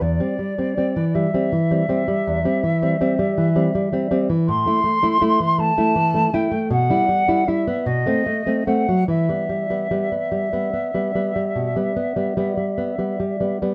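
Captured live in a single studio room with a moderate ambience, this brief fragment of a romantic flute and classical guitar duo places the thumb-plucked nylon-string guitar up front, while the silver concert flute sounds airy and distant. Unfolding in a rubato 12/8, the guitar's warm accompaniment moves from C/E through Am and Em/B to B7b9 before settling on Em. Above it, the flute carries a solemn, yearning melody with tongued notes and vibrato.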